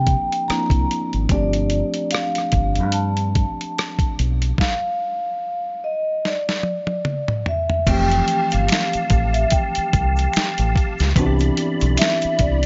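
A mellow, airy vibraphone melody with slapback echo opens this sensual neo-soul R&B excerpt over a worn, slightly out-of-tune tine electric piano with light overdrive, a dark, round fingered electric bass and gritty, compressed boom bap drums with a thumpy kick. The parts halt for a stop at 4.6 seconds, and a drum fill enters at 6.2 seconds. At 7.9 seconds a fat, percussive tonewheel organ with key click and slow rotary speaker arrives alongside a very quiet, close egg shaker and finger snaps in a dry, muted-top mix.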